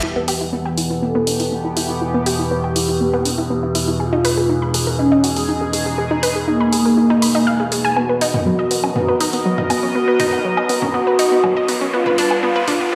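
A mellow synth brass carries the melody in this dramatic, melancholic stretch of melodic techno, its dark, brassy sawtooth tone softened by chorus, a gritty 12-bit sampler character and digital delay. Alongside it, a detuned analog pluck runs arpeggios with a round, fast-decaying attack and tape echo, under a filter sweep that spans the whole build-up. A sweeping resonant pad holds slow-attack chords that evolve and swell, while an overtone-sweeping drone sits low with moving harmonics and its own built-in reverb. A punchy analog drum machine, re-recorded in a small room, enters at 0.3 seconds at a steady 121 BPM with hi-hat, toms and woodblock. The harmony moves from Em through G#m and Bmaj7 before returning to Em. In the background, a reverse cymbal sounds at the very start, and a riser climbs from 10.6 seconds. The whole excerpt sounds as if played through a big sound system in a bare room, bathed in a large, wet studio reverb.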